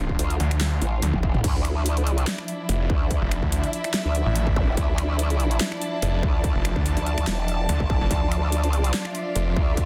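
Aggressive and heavy, this half-time wobble dubstep drop pairs a snarling, detuned saw bass and a saturated, formant-filtered growl bass up front with a distorted, tape-warm electronic kick and a dubstep kit of huge snare, bright hats, crash, snaps, handclaps and toms, while a distant, lush symphonic string section holds sustained chords under sidechain pumping, an intimate sul tasto chamber string section joins at 1.4 s after a short drum fill, and a brief electronic zap flickers in the background at 4.6 s, all within a dense, heavily limited digital ambience.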